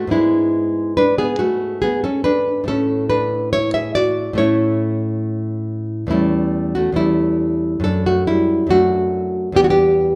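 A fingerpicked solo nylon-string guitar with a woody, old-strings tone sits up front in a moderate recital-hall reverb, playing a flowing, dance-like baroque-style classical piece in 4/4 at 70 BPM with a rubato feel, ranging from E2 to E5 and moving from A major into D major at 6.1 s across this brief excerpt cut from a longer work.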